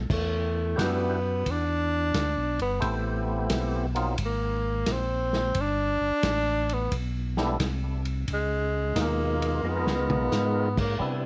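Swung eighths in 4/4 carry this bluesy, smoky soul jazz organ trio fragment, with a thick, lightly overdriven tonewheel organ bass line up front, colored by chorus vibrato and a slow rotary speaker. A breathy, whispered tenor saxophone solos intimately throughout, with scooped notes and vibrato, while a percussive second tonewheel organ enters at 0.8 s with slow rotary, overdrive and analog delay. A muffled vintage drum kit with dark cymbals, a punchy kick and 12-bit sampler grit plays a fill from 9.6 to 10.3 s, all set in light reverb with a cassette-tape sound.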